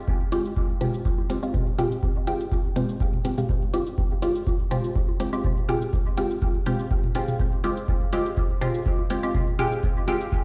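Played through a big sound system in a bare room with large studio reverb, this hazy, cavernous dub techno fragment moves at 123 BPM in F minor with a light swing. A muted, detuned sawtooth chord stab on Fmadd9 sits up front, its filter pluck shaped by chorus, phaser, sidechain pumping and dub echo, beside a deep, tape-warm analog kick. Metallic electronic cabasa and hi-hat sit faintly in the mix, while analog electronic bongos and toms, pumping and echoing, stay in the background.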